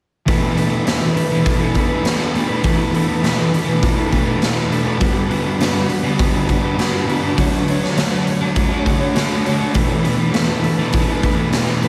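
Rock steeped in shoegaze and dream pop, this short excerpt from a longer piece moves at 101 BPM in a straight 4/4 with a wistful, dreamy mood. A dark, compressed fuzz guitar sits up front, its distorted riff bathed in lush chorus, while a clean, fingered electric guitar plays a mellow riff of its own, trailed by reverse reverb. Beneath them a raw garage drum kit of hi-hat, kick and snare sounds saturated and gritty, with a boomy kick, a medium-tuned snare, a rolled-off top and a pumping, bright stone-room character. All three parts play together from 0.3 to 11.9 seconds over a progression that moves from E7sus4 to Gmaj7 and Dmaj7 before returning to E7sus4. The mix is soaked in a lush hall reverb with a 2.0-second tail alongside small room ambience, giving the whole passage a dreamy quality.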